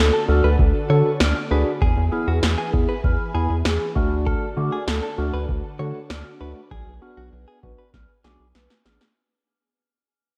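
Set in light reverb and digital ambience, this bright, nostalgic synth-pop fragment fades throughout as a rubbery, bouncy square bass and a punchy analog drum machine with a deep kick sit up front, a clean tine electric piano accompanies, a soft-mallet vibraphone rings out metallic arpeggios through tape echo, a direct-recorded electric guitar plays a compressed, picked second line with spring reverb and tape echo, and a vintage organ-like string ensemble holds mellow chords with phaser and chorus in the background over D, E and Bm, before a drum fill arrives at 7.9 seconds.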